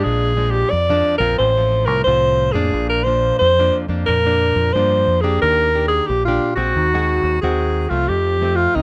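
Lively and festive, this short excerpt cut from a longer piece blends samba and choro at 90 BPM in a straight 4/4. A breathy alto saxophone carries the melody up front from the start, playing in a jazz style with vibrato, a hushed subtone, scooped notes and a smooth top, ranging from Eb4 to D5. Beneath it, a dark nylon-string guitar is fingerpicked in a classical manner as accompaniment, sitting lower in the mix. A deep, round electric bass enters at 0.1 seconds, fingered with a punchy, direct amped tone. The harmony moves from Bb7 through F/A and Bb to Ebmaj7 and Ab7/Eb before settling on F, all heard in a light reverb.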